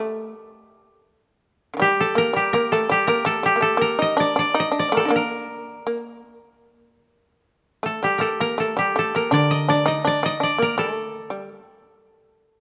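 Austere and solitary, this brief cut from a longer piece of Japanese chamber music moves in a free, rubato 4/4 around 82 BPM in G hirajoshi, with an up-front, woody koto melody plucked with fingerpicks ranging from G4 to G5 over a bright, buzzing, percussive shamisen second line, while a mellow koto accompaniment sounds a low D3 from 9.3 to 11.5 seconds, all captured by close, detailed microphones in light reverb.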